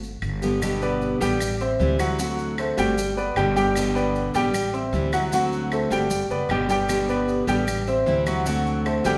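A dark, thumpy pizzicato upright bass and grainy, mellow maracas open this sunny, danceable fragment of Cuban son and guajira, with dry claves tapping in the background and a full-bodied fingerpicked nylon-string guitar joining at 0.4 seconds. At 0.8 seconds a clear concert grand piano steps up front with open arpeggios over a repeating G, Am7, D7 cycle. The reverberant recital hall gives the ensemble a spacious, church-like glow.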